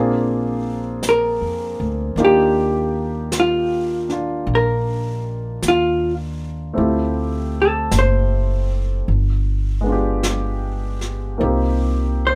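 Jazz ballad at a slow 52 BPM with a swung feel, wistful and melancholic, in a short fragment cut from a longer piece. A warm upright piano with long sustain and a woody pizzicato upright bass open together up front. A brushed kit with a medium-tuned snare and hi-hat joins at 1.0 s, and a dark, clean, compressed hollow-body electric guitar enters at 1.1 s to carry the picked solo melody. Light reverb surrounds the playing as the harmony moves from Bb7 through Ebmaj9, Dm11 and G7b9 to Cm7.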